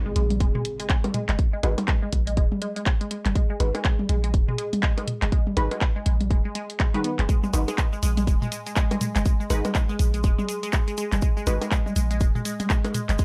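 A dark, lightly reverberant production opens this quirky, hypnotic slice of minimal techno, cut from a longer piece and moving at 122 BPM in 4/4 with a 60% swing on the sixteenths, in G# minor. A faint electronic impact sits in the background for the first 1.4 seconds over a G#7 chord voiced minus its third, while a punchy, up-front kick and a deep sine sub bass with a pitch-drop attack anchor the groove, the bass pumping against the sidechain. A juicy, squelchy blip pluck carries the riff between D#3 and B3, its wave-folded, resonant tone colored by phaser, sidechain pumping and dub echo. Bright hats and handclaps from a layered house kit join tape-warm electronic toms and bongos, and from 1.6 seconds a muted, detuned dub chord stab drifts in the background with ensemble chorus and dub echo until 11.6 seconds. At 7.3 seconds a grainy acoustic tube shaker adds a faint small-room texture underneath.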